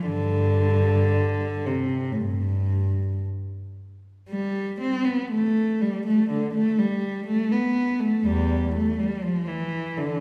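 Classical baroque-style suite movement for unaccompanied cello, a serene, dance-like fragment in which a single bowed cello, rich and up front, sings with expressive vibrato, portamento and flexible rubato, moving into a new section at 4.3 seconds, all bathed in the lingering reverb of a recital hall that lends a sense of distance.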